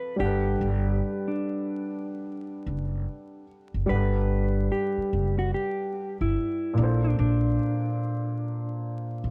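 Nostalgic and mellow, this brief hip hop excerpt, cut from a longer piece, moves at an unhurried 73 BPM in G major with a swung sixteenth-note feel. A clean, fingered electric guitar carries the melody from the start, its dark tone bathed in plate reverb, while an upright piano with a woody, natural character supplies the accompaniment beneath it. A pizzicato upright bass on gut strings joins at 0.2 seconds with a thumpy, up-front presence, holding the low end. The harmony rests on a Gmaj9 before shifting to Bbmaj9 at 6.8 seconds, and the guitar falls away at 8.8 seconds as piano and bass carry on to the close. Vinyl crackle and a modest small-room ambience give the production a dark, warm finish.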